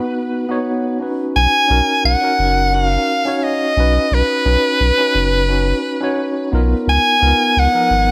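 Sunset chillout in B lydian at a relaxed 87 BPM, this smooth, warm fragment of a longer piece opens with a brief break in which a bright, close-miked soprano saxophone sings a jazz-style solo melody with vibrato and a soft attack over a barky, clean tine electric piano heard through its built-in speakers. Both carry digital delay, and the piano is roughened by vintage 12-bit sampler grit, all over a rootless G#m7. At 1.4 s, as the harmony shifts to Bmaj7, a deep, round sine sub bass with a fast attack and tube saturation enters up front, sustaining beneath the chords through the move to C#13 at 6.9 s. Light reverb and a studio ambience surround the parts.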